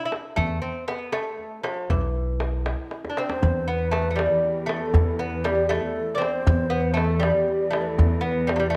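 A bright, delicate fingerpicked lute on double gut strings leads this soulful, melancholic Persian modal piece in E dastgah shur at 79 BPM in 6/8. Its slapback echo sits up front beside a woody pizzicato upright bass and the deep, vintage soft-handed tones of a tombak, whose fill from 2.9 seconds overlaps the entry of a breathy low ney with vibrato at 3.2 seconds, and a lush bowed cello section holds an E2 drone from 3.4 seconds, all set in a light reverb.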